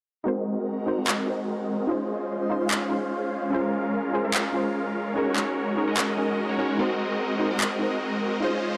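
Playful and euphoric, this short future bass excerpt moves at 147 BPM in 4/4 with a half-time feel, cycling through Ab9, Dbmaj7, Bbm7 and Gb69 before returning to Ab9. Up front, huge, lush supersaw chords carry the riff with a bright, detuned sawtooth edge, shaped by a low-pass filter sweep and digital delay across the whole passage. Beneath them, a soft, round pluck with a gentle, mellow decay plays the accompaniment, coloured by chorus, cassette tape character and digital delay. An airy, breathy pad sits very quietly in the background, holding sustained chords with a slow attack and long release. Overdriven electronic handclaps punch in up front from 1.1 to 7.7 seconds, while light reverb and a digital ambience surround the mix, with some lossy compression artefacts audible.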